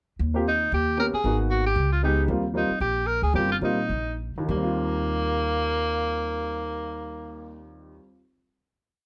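Swung eighths in a two-feel drive this short, sophisticated small-group jazz piece, with a thumpy, woody upright bass on gut strings plucking beneath syncopated comping from a warm upright piano in rootless voicings. Up front, a clear tenor saxophone with light vibrato and scooped notes states a vintage, hook-based melody of short motifs. The band slows from 2.3 to 4.5 seconds before settling onto a final chord in light reverb.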